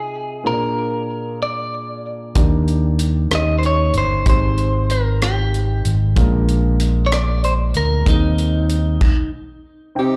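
This slow gospel piece in Eb major moves at 63 BPM in a straight 6/8 with a hopeful, reverent mood, as a clean, picked electric guitar carries the melody through slapback and tape echo over a warm grand piano with deep bass. At 2.4 seconds a round, dark fingered bass and a crisp drum kit with a punchy kick, dark cymbals, hi-hat, rim click and crash join beneath chords that drift from Bb7 through Ebmaj7 and Abmaj7 to Eb6. After a stop at 9.0 seconds, a bright, tight saxophone section steps in at 10.0 seconds, all heard as a live club gig through the venue's PA in a small room.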